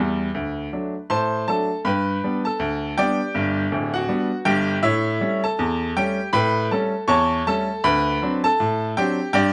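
Ragtime piano in G major at 80 BPM in 2/4, with a jaunty, cheerful swing on the sixteenth notes, cut from a longer piece. A brilliant, woody upright piano plays alone and up front for the full 9.5 seconds, ranging from D1 to C#6 over a progression of D, G, A7 and D7. A moderate studio reverb gives the room a sense of space, and the sound's content stops at 10.5 kHz.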